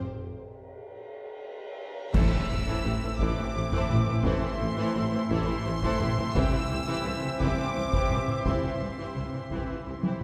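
Heard from further back in a reverberant scoring stage, this dark, dramatic cinematic orchestral cue moves at 57 BPM in a slow 6/8 in A minor and is cut from a longer piece. Smooth violins carry a high melody over a second violin line, intense violas supply accompaniment, and clear woodwinds and mellow French horns hold sustained chords. A drum fill leads into a band accent at 2.1 s, where heavy taiko drums, bright clash cymbals with concert bass drum, faint round timpani, trombones and focused cellos arrive as the harmony lands on Am. A huge, barely audible impact follows, and a very quiet tuba and distant double basses join to fill out the low end, with the chords moving to C at 6.4 s.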